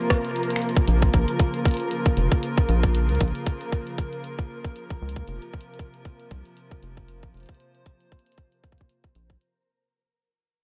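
A tight, up-front electronic kick and a glitchy kit of finger snaps, clicky hi-hats and rim clicks, the kit trailing a digital delay, drive this intricate, cerebral IDM fragment at 116 BPM in 4/4 with a light 16th-note swing. A rubbery, nasal square bass enters at 0.9 seconds beneath a soft, flute-like pad with chorus, the harmony moving from Fsus4 to Bb minor and back. A grainy, flickering texture pumps faintly in the background with its own reverb, while the otherwise dry, close sound fades out across the whole passage, which is cut from a longer piece.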